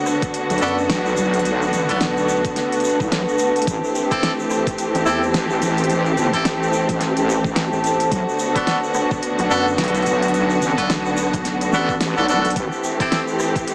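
Playful and funky, this glitch hop excerpt at 108 BPM swings over alternating Bm7 and Am7 chords, with rich, grit-edged sampled strings holding sustained chords beside a warbling, nostalgic tape-like pad, while a pop drum kit with fat snare and crisp hats, a knocking electronic kick, and a faint, grainy egg shaker drive the groove; a rubbery square bass and a heavy, saturated wobble bass fill the low end, and brilliant horn stabs with dub echo punctuate from 0.6 seconds, the strings, pad and horns pumping together, all set in a lush hall and squeezed into a compressed, small-speaker radio sound.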